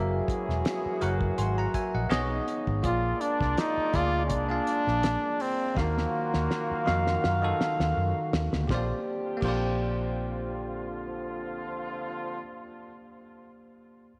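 A breathy, intimate flugelhorn with tape echo sings the melody up front until 8.0 seconds in this smooth, lush 1970s-style soul excerpt, over a bell-like tine electric piano, a mellow French horn section holding soft background chords, punchy distant horn stabs with tape echo, a round foam-muted fingered electric bass, and a cloth-damped, thuddy drum kit with a fat snare that plays a fill from 5.8 seconds, all in an echo chamber reverb.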